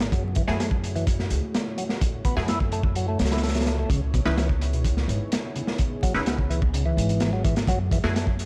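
Breakbeat at 127 BPM in a straight 4/4, this raw, energetic passage is cut from a longer piece and moves between F#m9 and C#m9 chords. A crunchy, saturated acoustic drum kit sits up front with a punchy kick, a medium-tuned snare and hi-hat, its gritty sound given a rolled-off top. Beneath it, a woody pizzicato upright bass holds the low end, and a percussive tonewheel organ with key click and second-harmonic percussion plays a riff through a slow rotary speaker and delay from 0.1 seconds. Filtered dub chord stabs, resonant and wave-folded with a fast filter pluck and short decay, enter at 0.5 seconds through phaser and delay. A moody, detuned analog pad with a sub octave and slow attack sustains chords in the background, pumping under sidechain with chorus, while vinyl crackle and dark studio ambience surround the whole mix.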